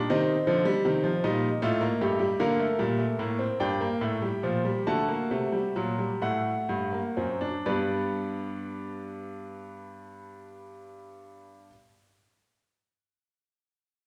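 Serious and contemplative, this cut from a longer baroque-style four-part fugue in 12/8 unfolds at a slow 40-54 BPM on a solo grand piano, clear and intimate with audible action noise, slowing through its opening as harmonies move from C minor through G minor and D7 to rest on G at 7.7 seconds, before the piano ends at 11.7 seconds into the wet bloom of a recital hall heard from further back in the room.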